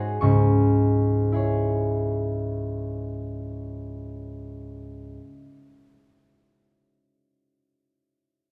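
Classical in C# minor at a slow 55 BPM in 4/4, taken with a rubato feel, this brief cut from a longer piece carries a melancholic, yearning mood. A concert harp plays the accompaniment across the whole 6.1 seconds, its thumb-plucked strings warm, ringing and up front, spanning from C#2 to D#6 over a C#m chord. Close, detailed microphones capture the instrument within a moderate recital hall reverb.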